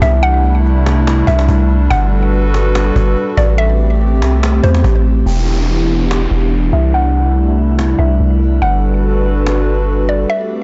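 A half-time 4/4 groove at 143 BPM, carried by a woody cajon with faint snares in a live room, underpins this ethereal, hazy cloud-rap excerpt: a deep, up-front 808-style bass holds long sine notes beneath a hollow, flute-like pad with chorus, while a dark, round FM mallet pluck sings the melody through phaser, delay and low-pass filtering, an electronic downlifter arrives at 5.3 s alongside a filter sweep, and the blown-out, overdriven recording sits in digital ambience with its top end cut off above 7.8 kHz.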